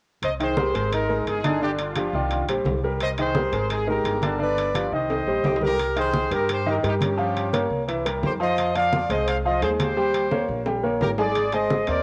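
A tight, up-front horn section carries the melody with light vibrato in this passionate, driving salsa excerpt in C minor at 172 BPM, joined from 0.4 s by a brilliant upright piano with long sustain. Underneath, a woody, thumpy pizzicato upright bass on gut strings plays alongside soft-handed, damped congas sitting in the background and ringing, saturated metal-shell timbales, with drum fills arriving at 5.1 s and 10.3 s. The home cassette recording carries a moderate spring reverb, while the chords move from Cm7 and Absus2 toward Fm7, Eb7 and a closing Ab.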